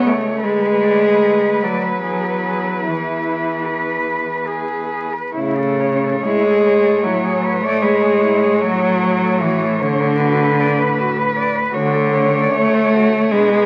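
Heard through the crackle of a very old 78 rpm record and a moderate large-studio reverb, this short cut from a longer classical piece for cello ensemble has a warm, serene mood at a slow 74 BPM in 4/4, with uneven, rubato beats and tuning at A4 = 438 Hz. A clear, smoothly bowed cello with light vibrato carries the lyrical melody in a high register, while a second cello sits in the background with a soft supporting line and a close, up-front cello plays the fuller, rich-toned accompaniment. Beneath them a focused bass cello anchors the harmony as it moves gently from Bm7/D through E, A, E6/A and F#m/A toward a closing Dmaj7.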